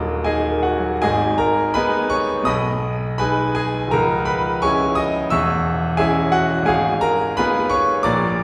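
Bittersweet and passionate, this short passage from a romantic character piece for solo piano is cut from a longer work. The grand piano sits up front with a bright, polished tone and long sustain, and the audible action noise lends it an intimate presence. The playing moves in 2/4 with a free rubato feel, spanning the keyboard from deep bass to upper treble. After a brief opening phrase, a new section begins at 1.0 seconds and carries the music through to the end at 8.4 seconds, with the harmony moving through a chain of minor chords before settling on a diminished sonority. A wet recital hall reverb surrounds the instrument, giving it the spacious air of a church or concert hall.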